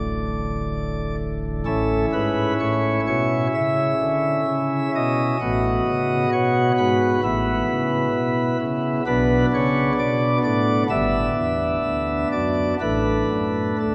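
A cathedral's wet reverberation, with a decay of about 4.6 seconds, surrounds this short classical passage cut from a longer chorale-style piece for solo pipe organ. The organ sits up front, voiced with light, sparkling flute stops in a baroque manner. The organ plays throughout, spanning from a deep D1 up to E5. The mood is serene yet majestic, moving at a slow, rubato 64 BPM in 4/4, in A major, tuned to A4 = 439 Hz. After a brief opening on a bare D5 sonority, the harmony settles onto A at 1.7 seconds and then moves through B7/A, E5/A, Bm and G before resting on D/A near the close at 13.9 seconds.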